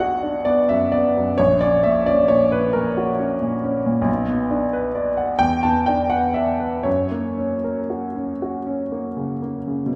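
Yearning and melancholic, this short excerpt from a longer romantic nocturne for solo piano unfolds in a slow, rubato 12/8, with the dotted-quarter pulse hovering around 38-46 BPM. A single upright piano plays throughout the full 10 seconds, ranging from A#1 up to A5 and tuned slightly off standard pitch at A4 = 439 Hz. Its tone is woody, intimate and a little detuned, with the mechanical action audible beneath the notes, giving it a natural, close-up character as it sits up front. The harmony moves through B minor, F# over A#, back to B minor, then E5 before settling on F#. A wet recital hall reverb with a 1.8-second decay surrounds the instrument, the room itself heard from further back, while lossy compression artefacts lend the recording a slightly worn quality.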